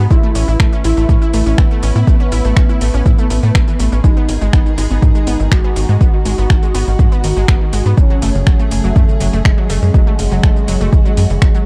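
Hypnotic and dark, this melodic techno passage cut from a longer piece moves at 122 BPM in a straight 4/4, centred on G# phrygian as the harmony shifts from A to G#m at 4.0 seconds and F#m at 8.0 seconds. An overdriven, punchy electronic kick sits up front, joined by a deep house kit of finger snaps, metallic hi-hats and shaker, also overdriven, with sidechain pumping on the hats and percussion. A tight sequencer bass of sawtooth and square tones drives underneath with a filter pluck and moving notch, while a lush, bright unison pluck spins detuned, wave-folded arpeggios through tape echo. Above them an expressive synth lead carries the melody with vibrato, ensemble chorus and dub echo, and a very quiet, eerie FM bell traces an inharmonic second line until 8.6 seconds. Sul tasto studio strings hold soft, intimate chords in the background, and the strings, pluck, bass and lead all breathe with sidechain pumping in a dry, dark mix.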